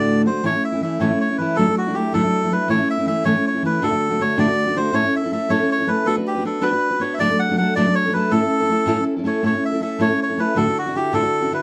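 A reedy, nasal melodica carries the tune up front in this short Celtic folk excerpt, its breathy tone and plastic-case character ranging from F#4 to F#5. Beside it, a fingerpicked dreadnought steel-string acoustic guitar supplies the accompaniment, equally forward in the mix, spanning D2 to B4 with a warm, acoustic tone. Both instruments play together from the start to the end at 11.6 seconds, in a rollicking, lively 6/8 at 107 BPM, felt in dotted quarters with a straight feel. Set in A major, the harmony moves through A, Dadd9, D and Bm, and the opening phrase begins again at 9.4 seconds before the clip cuts off. A light reverb lends the pair a touch of space while keeping them close and present.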